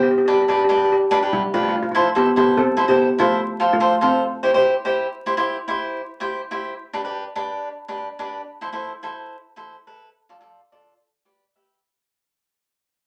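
A double-seconds steel pan and a picked acoustic cavaquinho open together in a sunny, festive calypso at 144 BPM in C major, with a light swing on the sixteenths. Struck with hard rubber sticks, the pan carries the melody in a dark, shimmering metallic tone, sitting up front beside the crisp cavaquinho accompaniment. The harmony moves through G, Amadd9, F and C, then later through Dm before returning to G. The pan drops out at 4.8 seconds, leaving the cavaquinho alone as the music fades out from 5.1 seconds to the end at 11.8 seconds. A short club reverb and a layer of vinyl crackle give this cut from a longer piece a lively, old-record feel.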